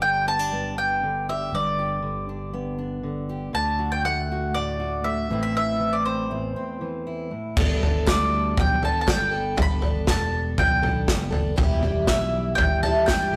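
A straight 4/4 pulse at 119 BPM carries this hopeful indie folk piece in G major, where a bright, woody mandolin leads the melody up front over a full-bodied fingerpicked dreadnought guitar and a dark, round fingered electric bass. After a short break, a punchy natural country drum kit and a shimmering, octave-doubled plugged-in twelve-string parlour guitar arrive at 7.6 seconds as the arrangement builds, joined by very quiet hollow handclaps and a barely audible jingly tambourine, while the fingerpicked guitar drops out at 9.3 seconds. The chords move from G through D and Am to Gadd9 and Em, and a moderate stone-room reverb with rough rehearsal-room saturation lends the whole passage a homespun warmth.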